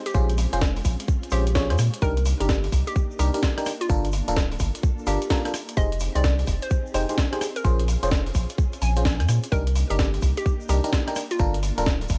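A dark, digitally ambient production frames this bouncy, soulful two-step garage excerpt in C minor at 128 BPM with a 16th-note swing, where a tight, up-front electronic kick and a gritty, pitched-up sampler-style kit of hi-hat, rim click and snare drive over a deep, round dub sub bass with sidechain pumping, while glassy FM electric piano stabs with chorus, phaser and delay, a hollow, detuned square-wave pluck melody with chorus and delay, a silky string machine holding background chords with ensemble chorus and pumping, and a grainy tube shaker move through Bbm9, Cm9, Gm9 and Fm9.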